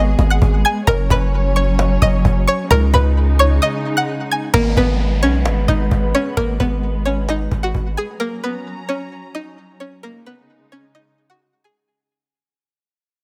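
A light reverb and small-room ambience frame this brooding, hard-hitting trap excerpt in G# minor, moving at 131 BPM in 4/4 with a half-time feel. Up front, a twangy, string-like resonator pluck carries the melody with a bright sawtooth edge, a noise layer, a filter sweep, chorus and delay. Beneath it, a dark, veiled string section plays con sordino with vibrato, holding bowed chords over a G#m, F# and C#sus2 progression. A deep, mellow 808-style bass with a sine tone and long decay sits prominently in the mix until 8.0 seconds. A woody cajon struck with hard hands stays in the background with faint snares. After a break at 3.6 seconds, the piece begins fading out at 4.5 seconds, and a background electronic downlifter enters shortly after, at 4.6 seconds.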